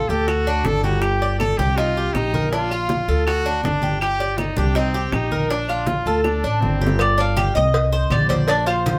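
Sultry Cuban son and guajira excerpt in G minor at 161 BPM, where a brilliant, close-miked trumpet carries a second line up front over mellow, metallic tres arpeggios, a dark, thumpy pizzicato upright bass, round bongos and cowbell, bright low-tuned congas and compressed woody claves, with a drum fill at 6.2 seconds before the tres takes the melody at 7.0 seconds, all set in a moderate room reverb of a band playing live together.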